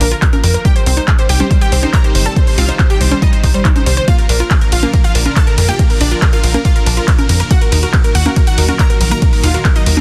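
Opening on a bright, detuned unison pluck melody over a lush phaser-swept supersaw pad with vintage 12-bit grit, this soaring uplifting trance excerpt at 140 BPM in Bb major pumps with sidechain on its leads, pad, chorused round analog pluck arpeggios and a tight, tube-saturated sawtooth sequencer bass, while a catchy plucky second lead with vibrato and dub echo sits behind, a tape-warm punchy analog drum machine supplies congas, handclaps, hi-hat and ride, and an up-front electronic kick enters at 0.2 seconds, all in a dry, dense, heavily limited mix moving from Bb to Cm, back to Bb and on to Ebm.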